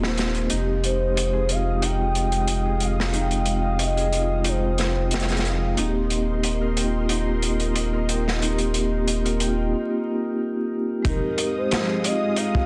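A crunchy, saturated breakbeat kit at 91 BPM sets a smoky, hypnotic trip hop groove in F minor, with a round sub bass up front, ringing soft-mallet vibraphone under harmonic tremolo and tape echo, background cello string-machine chords, a felt-muted upright piano arpeggiating from 0.5 seconds, and a pure, breathy sine lead gliding with portamento and 12-bit grit from 0.8 to 5.5 seconds and again from 11.1 seconds, all over vinyl crackle and a dense, heavily limited master in this excerpt cut from a longer piece.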